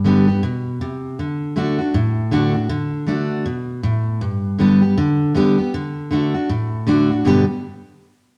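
Recorded live by a band in a wet, stone-walled room with a 1.3-second reverb, this rowdy, rollicking rock excerpt at 158 BPM swings its eighths as a lone picked steel-string acoustic guitar, up front with a dark, woody, full-bodied jumbo tone and the sound of old strings, rocks between G and D in G major from G2 to G4 before falling silent at 7.4 seconds.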